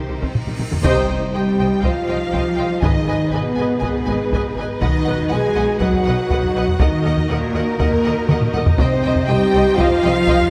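Cinematic, epic orchestral film score at 121 BPM in C harmonic minor, relentless and heroic, cut from a longer piece: a huge cymbal swell and impact opens it, a very quiet, round timpani note sounds at 0.8 s, and a close, dry taiko ensemble struck with hard sticks drives the 4/4 pulse, with drum fills near the start and at 8.3 s. Dark, tight French horn chords sit over a lush cello bass line and a rich double bass section in the background, while a violin section carries a focused melody, also in the background, above a smooth, even second violin line and an expressive viola accompaniment. From 0.8 s a string section adds sustained chords with vibrato and portamento, and the orchestra sits in a moderate concert-hall reverb as the harmony moves from Cm through Abm, B and Ebm back to Cm.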